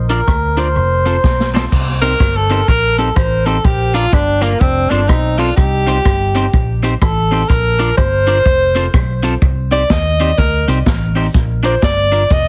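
A swung eighth-note ska groove in 4/4 drives this short, energetic cut from a longer piece. The groove is carried by a vintage drum kit with a punchy kick, medium-tuned snare, rim clicks, hi-hat and dark crash cymbals, touched with analog delay. A round, foam-muted fingered electric bass sits up front, while a picked electric guitar at the edge of break-up adds slightly broken-up, compressed accompaniment throughout. A reedy, breathy melodica with analog delay opens the melody briefly, stopping at 1.5 seconds, and a drum fill from 1.2 seconds leads into the next section. From 2.0 seconds a bright, punchy alto saxophone takes an up-front pop-style solo over repeating Bb, F and Cm changes, its line also carrying analog delay. Light reverb and heavily compressed, radio-style multiband processing give the whole mix a dense, squeezed character.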